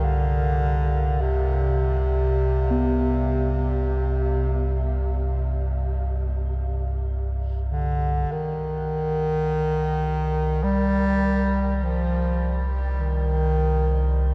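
A cavernous, dark production wraps this short dark ambient drone fragment in a huge reverb, giving it an ominous, free-time drift in C harmonic minor. Up front, a deep rumbling drone of detuned sawtooth and triangle tones sits low with a lush chorus, and from 8.3 seconds a filter sweep moves across it as the harmony settles on C minor. A warm solo bass clarinet carries the melody in a classical style, its soft attack present and close, trailed by shimmer reverb and delay. Behind it, a moody analog pad holds sustained chords with a chorused sub-octave depth, fading out over the first 8.3 seconds. Gamelan-type bossed gongs add metallic, bronze arpeggios with a beating, airy ring in the background until they stop at 9.8 seconds.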